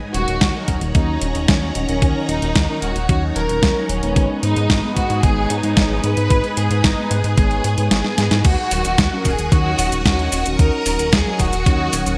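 A straight 4/4 italo disco groove from an overdriven, thumpy electronic kick and an up-front 12-bit drum machine with cabasa, hi-hat, crash and gated-reverb snare carries a bittersweet, nostalgic mood, as a chorused pulse-wave synth bass, round detuned synth brass stabs, a swirling phased string machine in the background and an expressive bowed violin section melody with digital delay fill a lush hall, the kick dropping out at 7.9 seconds for a drum fill before returning.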